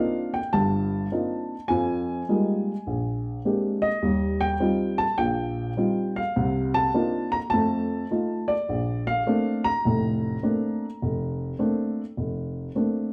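Relaxed and warm, this solo jazz piano passage, cut from a longer piece, swings easily in 4/4 through a progression of extended chords from Cm11 to a settling Bbmaj9 at 8.7 seconds. The dark upright piano sits up front with a woody, intimate, vintage character, short sustain and audible action noise, reaching from deep bass notes into the upper register. A moderate large-studio reverb gives it a live, in-the-room feel.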